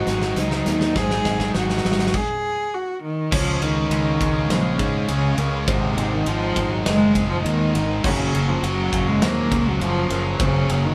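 An up-front, nasal cello bows a soaring melody with light vibrato across this cinematic post-rock piece at 102 BPM, as a growling overdriven fingered bass, a big rock drum kit with a punchy kick, thick fuzz and tight distorted guitar riffs, arpeggios from a felt-muted upright piano and a faintly broken-up electric guitar through a small old amp, and a very quiet warbling tape-like pad holding chords all play live in a reverberant room, building through a drum fill and a stop before the second section opens at 3.3 seconds on Db, Abadd9 and Gbadd9.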